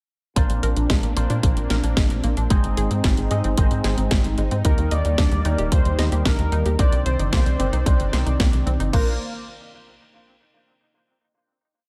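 A four-on-the-floor electronic kick drives this short italo disco piece at 112 BPM in straight 4/4. It is joined by a house drum kit of closed hi-hat, cracking snare and crash cymbal, both drum parts tape-colored and re-recorded in a large room. Up front, a tight sequencer bass runs sixteenth notes with a punchy, tube-saturated sawtooth edge, while in the background an analog pluck repeats a 16-step arpeggio through chorus, cassette tape and tape echo. A dark, clean electric guitar through an envelope filter adds compressed, syncopated chord stabs, and a smooth, detuned analog pad holds sustained chords over a Bbadd9, Ab, Eb, Cmadd9 progression in Bb mixolydian. At 4.6 seconds a fat, brassy analog synth lead enters with hook phrases, its vibrato and digital delay giving the playful, romantic mood a bold top line, and over a dry mix the piece settles on a final Bbadd9 chord at 8.9 seconds.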